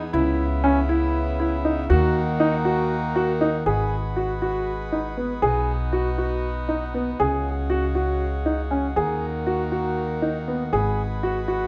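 Restless and hypnotic, this contemporary chamber piece in G# minor moves in 7/8 at 238 BPM counted in eighths, and it is cut from a longer work. An up-front grand piano plays warm arpeggios with short sustain. Beside it, a woody, bright pizzicato upright bass on steel strings holds the low end, while a reedy, nasal, breathing hand-pumped harmonium carries sustained chords, all in light reverb. The harmony moves from C#m7 and D#m into a second section at 3.7 s that passes through G#m7, B, C#sus4 and D#m before returning to G#m7.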